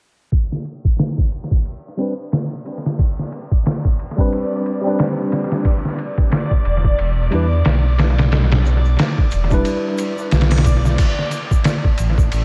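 Dark, detuned saw bass rumbles up front from 6.7 s beneath gritty, pitched-down sampler drums with analog delay, a worn tine electric piano with tremolo, tape echo and a filter sweep over Gadd11 and Em7, a reversed, dreamy swelling texture, and a soft egg shaker and triangle in the background, giving this brooding, cinematic 90 BPM swung trip hop excerpt its echo-heavy haze.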